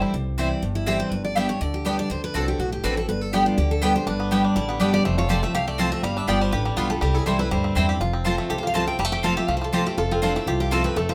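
Lively and joyful, this short bluegrass excerpt races along at 244 BPM in a straight 4/4, with a bright picked dreadnought guitar carrying the melody with audible finger squeak over a second full-bodied guitar's accompaniment, a woody, up-front pizzicato upright bass, bright picked mandolin stabs on double strings, and a twangy, percussive fingerpicked banjo that sounds briefly at the very start and then re-enters the melody at 4.1 seconds, all set in a moderate studio reverb as the chords move from C through G, D7, F and G7 before shifting into a new section at 8.0 seconds.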